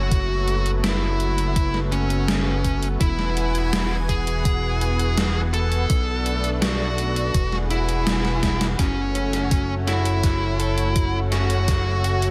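Synthwave at 83 BPM in F# minor, cinematic and nostalgic, this excerpt from a longer piece sets an up-front fuzz lead guitar, distorted and compressed with digital delay, over a lush, detuned unison pad with chorus and sidechain pumping, a glossy, mellow chorused synth bass, and a thumpy, overdriven electronic kick. A gated 80s digital drum machine supplies hi-hat and a snare soaked in gated reverb, re-recorded in a small room, while the chords move from F#m through Eadd9 and Bm7. After a drum fill at 8.2 seconds, a clean, picked electric guitar enters in the background at 8.8 seconds with arpeggios under a low-pass filter sweep and digital delay.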